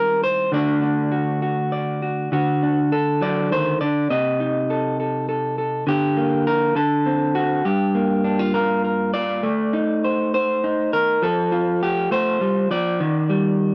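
A slow 6/8 lilt at 67 dotted-quarter beats per minute with a straight feel carries this haunting, intimate folk excerpt, played by a single electric guitar through a small old amp. The guitar sits up front with a dark, slightly broken-up picked tone, ranging from G2 to Eb5, and moves through shadowy minor and diminished harmony such as Cm/Eb, Adim/C and Gm7. At 9.4 seconds a new passage turns from Adim toward F and Eb, all heard in a dry, close 1970s-style studio sound with light reverb.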